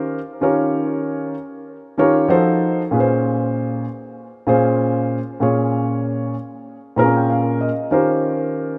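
Mellow and cool, this short hip hop fragment cut from a longer piece features a lone concert grand piano, dark with a deep bass and placed up front, swinging loosely through Eb9, F7b9 and Bbm9 voicings colored by analog delay. The piano adds a fill from 6.7 to 7.9 seconds before landing on an Eb13, all within a lush hall reverb and a rough home-demo mix.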